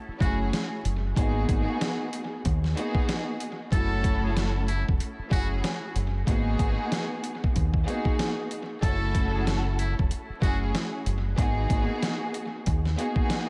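A dark, round fingered electric bass opens this moody, reflective boom-bap hip-hop passage at 94 BPM, swung on the 16ths in F# dorian, and is joined at 0.2 s by a gritty, compressed soul sampler-style drum kit with a thumpy kick and fat snare, a lush bowed studio string section with expressive vibrato, cassette tape coloring and dub echo, and a buzzy, thin metal-muted trumpet soloing in jazz style through its own dub echo, as F#m9 and G#m9 chords alternate in an echo-heavy mix with vinyl crackle and small-room ambience.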